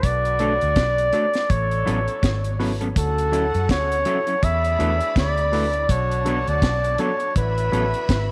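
Bathed in a roomy echo-chamber reverb, this sweet, tender lovers rock reggae passage at 82 BPM in A major sets an up-front flugelhorn melody with light vibrato, scooped notes and tape echo over a dry drum kit with a high-tuned snare and tight kick, a dark, round, foam-muted electric bass, mellow, clean guitar stabs, a worn, slightly out-of-tune electric piano lightly overdriven in the background, a bright saxophone section, and a lush bowed string section that enters at 3.0 s, moving through Bm7, A69, Dmaj9 and E7sus4.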